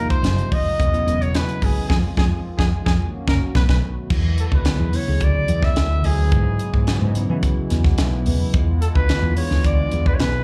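A growly, round fretless electric bass sits up front in this bright, soaring piece of electric jazz fusion, moving at 108 BPM in a straight 4/4. A tight funk drum kit with a high-tuned snare and a snug kick drives alongside it, while a distant, roomy trumpet carries the solo melody with a light vibrato and a slapback echo. In the background, a bell-like tine electric piano with analog chorus supplies clean accompaniment, and a hollow, flute-like pad holds mellow sustained chords. The opening passage moves through Ab9, E69, Fm7, Gb6 and B7 with a band accent from 1.9 to 4.1 s, then settles into E mixolydian on an E9 chord from 4.1 s. The electric piano takes a short fill from 7.4 to 8.5 s before the harmony shifts to E7b9. Heard through a club PA with light reverb, the excerpt has the feel of a live gig cut from a longer performance.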